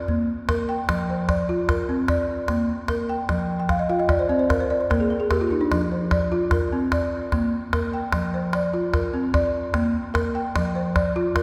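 This is West African traditional music for balafon and calabash, a short cut from a longer piece with a reflective, hypnotic mood. It moves at 99 beats per minute in a straight 12/8, counted in dotted quarters. The balafon carries the piece with arpeggios ranging from F3 to G5, struck with soft rubber mallets for a woody, round and full tone that sits close-miked and up front. The calabash enters at 0.1 seconds as percussion, a small, acoustic sound kept close and dry near the front, a little lower in level than the balafon. The harmony sways between Bb and F5, briefly dropping out of any chord while the balafon plays a fill from 3.6 to 5.7 seconds. The recording was made in a church or concert hall, with a wet church reverb that lingers for 2.6 seconds.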